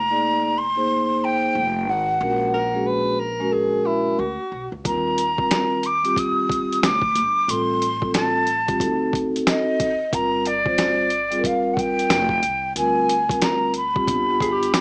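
A breathy, hollow flute melody with slapback echo opens this cool, smoky jazz-hop excerpt at 91 BPM over woody pizzicato upright bass and ringing soft-mallet vibraphone, with a distant subtone tenor saxophone adding a scooped second line at 2.5 seconds before a gritty, pitched-down boom bap kit with a thumpy kick arrives at 4.9 seconds, all heard through a small-speaker sound in moderate studio reverb.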